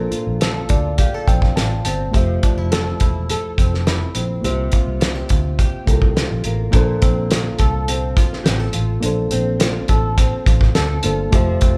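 A lightly reverberant, live-in-one-room sound frames this nostalgic, laid-back indie and bedroom pop piece at 104 BPM in 4/4, where a cloth-damped, thuddy drum kit with a fat snare and tight kick sits up front, a dark, round, foam-muted fingered electric bass anchors the low end, a fingerpicked flamenco guitar carries a vibrato effect, and a reedy, worn, slightly out-of-tune electric piano heard through its built-in speakers plays a fill from 0.4 to 2.1 seconds over chords moving from Bbmaj9 to Fmaj9 and C7sus4 before returning to Bbmaj9.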